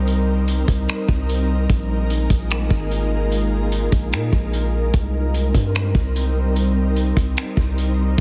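Atmospheric cloud-rap hip hop in C minor at 148 BPM with a half-time feel, this ethereal, spacious excerpt sets an airy, detuned pad with ensemble chorus, built-in reverb and sidechain pumping over a deep, sine-like 808-style bass sustaining up front, while a breathy, wind-like tuned noise texture sits in the background and a tight, mid-forward vintage kit of finger snaps, hi-hat and kick enters at 0.1 seconds, all moving from Cm7 to Bb7sus4 and back within a small room and a heavily compressed, radio-like sound.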